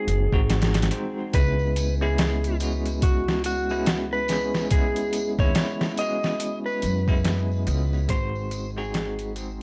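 Dry, gritty recording with vinyl crackle and transformer saturation carries this dark, cinematic trip hop fragment, where a pitched-down, compressed boom bap drum kit with a thumpy kick sits up front beside a woody pizzicato upright bass on gut strings, a bell-like tine electric piano shimmers with tremolo and tape echo, a dark, clean lap steel guitar sings the melody in slide and volume swells through sampler grit and dub echo, a distant tambourine joins at 1.3 seconds, and the whole piece fades out from 5.8 seconds.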